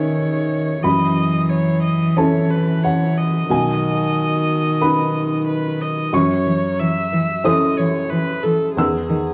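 Neoclassical piano and strings in F# dorian, this short excerpt moves at 91 BPM in 4/4 with a rubato feel, carrying a longing, reflective mood. An upright piano sits up front as accompaniment across a broad range from B1 to E6, its woody, intimate tone marked by audible action noise and short sustain. A solo viola adds a second accompanying voice between G#4 and E5, played sul tasto with light vibrato, a soft attack and an airy bow. A single cello carries the second line in a narrow span from D#3 to E3, also sul tasto, sounding pure and floating with a smooth top, placed up front in the mix. The harmony drifts from C#madd9/E through F#m7 and B6 back to F#m7, returning to a rootless C#madd9/E near 8.8 seconds. Captured as a live ensemble in one room, the players share a moderate large-studio reverb of about 1.2 seconds, and the overall sound has its top end rolled off above 7.5 kHz.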